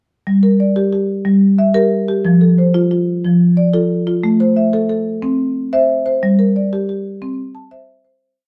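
Southern African traditional music in 12/8, built on an mbira-style interlocking cycle with a straight, trance-like and hypnotic feel. A single marimba played with medium mallets carries the whole short piece alone, sounding from 0.3 to 8.4 seconds and spanning F3 to A5. Its rosewood bars give a woody, warm tone, and the instrument sits up front as it repeats an interlocking ostinato. The harmony cycles through Gm, F, Am and C before returning to Gm and C. A stone room's wet reverb adds a one-second tail to the live performance. The piece fades out from 6.2 seconds.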